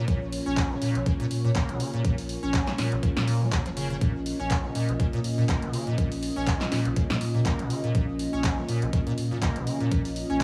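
Acid house with a hypnotic, trippy mood and a gentle 16th-note swing, heard as a short fragment of a longer piece. A squelchy, resonant square-wave acid bass riff sits up front with ensemble chorus and digital delay, over a moody, detuned sawtooth pad holding sustained chords and a round sine sub bass deep in the background; all three pump against the sidechain. A thumpy, sampler-style electronic kick and a punchy analog drum machine with handclaps, hi-hat and snare enter at 0.1 seconds, both tape-warm and re-recorded in a small, nearly dry room.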